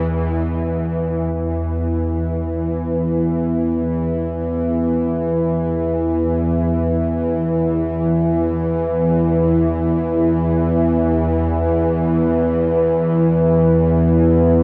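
Dark and unsettling, this ambient excerpt drifts in free time, built on a single bowed-like drone that holds from the start to 14.6 seconds within the range of E2 to E3. The drone is string-like and tense, a bright, up-front sawtooth tone with unison voicing and a noise layer, slow attack, long release, vibrato and its own built-in reverb. Everything sits in a wet cathedral reverb with a 6.7-second decay and the worn, warbling pitch drift of old cassette tape.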